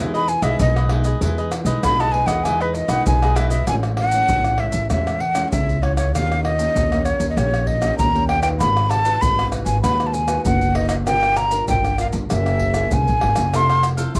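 Festive and sunny, this excerpt of samba and choro moves at 98 BPM in a straight 4/4, with a light reverb around a homespun cassette recording. A breathy jazz flute carries the melody up front, its soft attack, vibrato and lifted highs giving an expressive, metallic glow, and the opening 3.7 seconds are marked as a flute solo. Beneath it, a crisp, picked cavaquinho plays only at the start and returns briefly at 13.5 seconds, while a small, fingerpicked nylon-string guitar accompanies throughout with a tape-worn tone. A woody, thumpy upright bass sits up front, dark and pizzicato on steel strings. Maracas, pandeiro, tamborim and a deep surdo, played with soft hands in a live room, drive the groove as the harmony moves from Emaj7 through Amaj7, D#7 and G#m7 to a closing Fmaj7.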